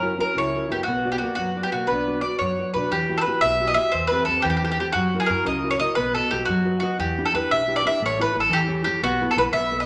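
Italian folk serenade in 6/8 at 118 BPM, passionate and wistful in E harmonic minor, where a bright, picked bowl-back mandolin with double strings carries the melody up front over fingerpicked, full-bodied nylon-string guitar and woody, growly pizzicato upright bass, while an airy, reedy alto flute with vibrato drifts distantly as a second line until 2.9 s, the whole set in a large, wet studio reverb and cut from a longer piece.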